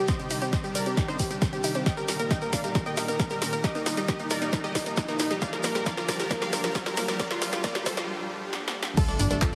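A detuned, up-front supersaw stab carries the melody over a lush pad and a round, chorused analog pluck arpeggio, each pumping with sidechain as filter sweeps drive an emotional, driving uplifting-trance build-up at 135 BPM through Cm, Eb and Bb6/D. A punchy electronic kick and an analog drum machine with snare, handclaps, hi-hat and crash play drum fills alongside a grainy tube shaker, while a very quiet riser enters at 2.0 s and a break arrives at 8.1 s. At 9.0 s an impact lands on Gsus2 with a second bright pluck line, followed at 9.2 s by a brief funky sawtooth bass, the whole mix set in a lush hall reverb with a heavily compressed radio sound.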